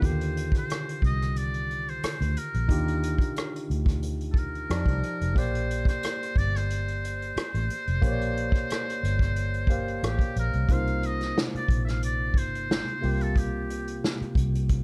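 R&B and neo-soul with a sultry, late-night mood and a light swing, where a buzzy metal-muted trumpet carries a breathy, vibrato-laced jazz melody with scooped notes until 14.0 s over a barky, lightly overdriven tine electric piano, a round, foam-muted fingered electric bass and a roomy acoustic drum kit played with bundle sticks on hi-hat, tight kick, rim click and snare, in a dry, dark production moving through chords such as Ebmaj9, F13 and Cm7.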